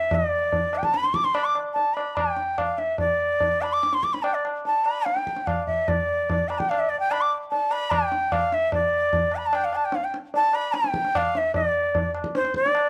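Close, detailed microphones and a light reverb give this short clip of Hindustani classical music an intimate, clear sound. A bamboo bansuri carries the melody from the very start, its airy, reedy tone sitting up front as it moves between C5 and D6 with tongued notes. The tabla enters at 0.1 s, low-tuned and ringing, with a vintage, band-limited character that also sits forward in the mix. The music is in raga Bageshri on D, tuned to A4 = 439 Hz, and moves in 7/4 at about 147 BPM with a straight feel, speeding up across the whole passage. A new section begins at 5.9 s, and the mood stays longing and introspective to the end at 12.9 s.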